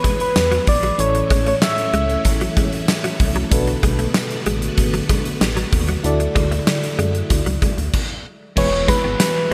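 This 1980s-style pop fragment feels nostalgic and uplifting, led by a gated drum kit that sits up front with a punchy kick and bright cymbals, alongside a round, gentle FM synth lead that carries the melody at the start. A warbling FM electric piano with tremolo and phaser plays throughout, while shimmering sawtooth string-machine violins hold sustained chords until 7.9 seconds and a clean, direct-recorded electric guitar picks a compressed riff in the background. A dark, solid FM bass joins at 0.4 seconds, and at 8.6 seconds the lead returns as a double-tracked, overdriven stack guitar adds brief accompaniment, all set in a lush hall reverb with bright digital production.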